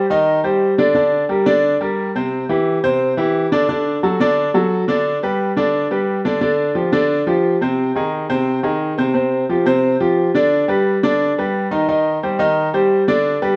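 Latin piano in a straight four, fiery and passionate, cut from a longer piece: a solo concert grand sits up front with a bright, brilliant tone, deep bass and long sustain, bathed in a wet stone-room reverb as it moves through chords such as Cm, Gm, Ab and Fsus2 before landing on Cmadd9 at 11.9 seconds.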